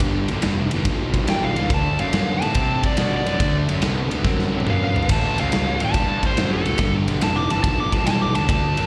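Heard live through the venue's PA with light recital-hall reverb, this gritty, swaggering slice of swung blues rock and southern rock at 142 BPM pairs a sludgy, double-tracked overdriven guitar riff with a growly fuzz bass and a punchy, up-front acoustic drum kit of kick, snare, toms, ride and crash that plays a fill at 4.3 seconds, while a dark, smooth lead guitar enters at 1.3 seconds over G7, D7 and A7 chords.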